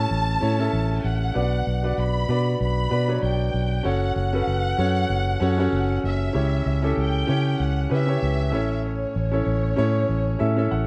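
Dramatic and earnest, this piano-driven pop excerpt moves at 96 BPM in B minor with a light sixteenth-note swing, its clear, natural grand piano carrying the accompaniment up front over chords that pass from A through Bm, F#m and C#dim back to A. Beneath it, a vintage fingered electric bass sounds dark, round and punchy with a foam-muted thud, while a distant, lush violin section sings the melody with vibrato, soft bowed attacks and expressive portamento. Light reverb colours the rough home-demo mix, and the piano closes with a fill from 10.1 to 10.9 seconds.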